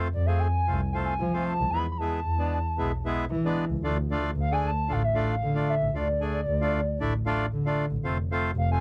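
A straight 4/4 pulse at 114 BPM drives this bittersweet yet festive klezmer excerpt in D dorian sharp4, moving through F, E and Dm before returning to F at 8.1 seconds. A reedy, up-front accordion opens the accompaniment at 0.0 seconds, joined at 0.1 seconds by a hollow, woody clarinet-like synth lead singing high with vibrato and chorus, and by a bowed double bass that sounds nasal and boxy. The dry, close 1970s-style studio sound carries only a light reverb.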